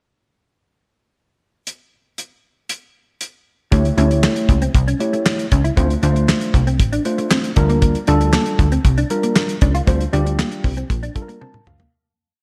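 Late-night and danceable, this early-eighties boogie funk piece runs at 117 BPM in a straight 4/4. It opens at 1.7 s with a pickup bar on a damped 70s drum kit: a dry, fat snare layered with handclaps, a tight kick, hi-hat and toms, with a rolled-off top and placed up front. At 3.7 s the verse arrives over A7, Dm7 and Gm7, driven by a punchy, detuned sawtooth-and-square analog bass with a filter pluck and moving notch, playing a syncopated boogie line with slides and chromatic approach notes. Alongside it, a worn, slightly out-of-tune tine electric piano runs through a combo amp with slapback echo, pushing drop2 chords with grace notes and short fills, while a dark, muted single-note electric guitar line with ensemble chorus sits in the background. A moderate scoring-stage reverb lends a big arena sound, and the track fades out from 9.9 s as closing electric piano and drum fills round off the piece.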